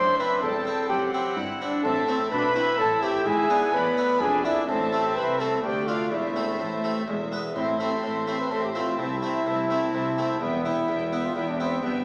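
A straight triple-metre pulse at 126 BPM drives this lively, festive baroque-style concerto movement in A minor, cut from a longer piece with solo episodes. A mellow trumpet sits up front carrying the melody with light vibrato. One violin section plays a higher melody line from the background, while a second violin section traces its own line with a rich, gut-string, period tone. An airy, bright harpsichord with one set of strings and a reedy viola section fill in the accompaniment, and a dark cello section and a distant, nasal double bass section hold the bass beneath. The harmony moves from C/E through Am and E7/G# to Dm and E before returning to Am and reaching Em at 10.4 seconds. The ensemble is heard from further back in a wet recital hall with a 1.5-second decay, giving a small-speaker sound.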